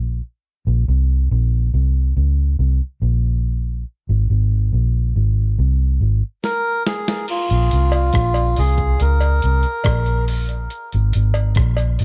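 A dark, round, foam-muted electric bass opens this spacious, hypnotic dub reggae piece alone, up front in an echo-heavy digital ambience, until at 6.4 seconds a stop and a fill bring in a gritty, tape-warm sampler-style drum kit with a thumpy kick as a reedy, breathy melodica floats in on dub echo, joined at 7.9 seconds by a close cowbell trailing its own dub echo.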